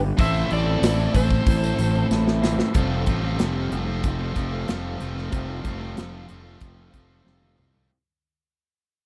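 A growly, fuzz-laden fingered bass sits up front in this driving, brooding classic rock excerpt at 93 BPM in 4/4, with a straight feel and the instruments tuned to A4 = 442 Hz. A big rock drum kit with a punchy kick and medium-tuned snare pounds beneath two bright, overdriven picked guitars, one a hollow-bodied semi-hollow and the other a distorted electric, both carrying the riff through the whole cut. In the background, a shimmering, octave-doubled twelve-string acoustic is fingerpicked from the start, joined early by a jingly tambourine that drops out at 2.7 seconds. In the opening seconds a dark, fingerpicked slide guitar with tape echo carries the melody above a dark octave-fuzz lead line further back, both stopping at 2.1 seconds as a drum fill moves the harmony from Am to Fadd9. The second half fades out toward another fill at the end, and the dry, close 1970s-style studio sound leaves the grit of every overdriven part exposed.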